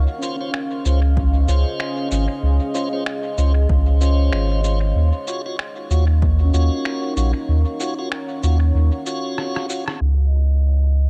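A dark, detuned ambient pad and a round, up-front sub bass open this spacious, hazy ambient dub fragment at 95 BPM with a lightly swung 16th feel, soon joined by mellow soft-mallet vibraphone arpeggios, piping tonewheel organ stabs through a slow rotary speaker, and muffled, pitched-down cabasa, finger snaps and rim click, all three bathed in dub echo, while a punchy, layered electronic kick plays from 1.2 to 6.4 seconds over chords moving from Dbmaj7 to Ebm9, and after a break with a drum fill and band accent the vibraphone is filter-swept from 10.0 seconds as a barely audible bubbling stepped-filter texture surfaces.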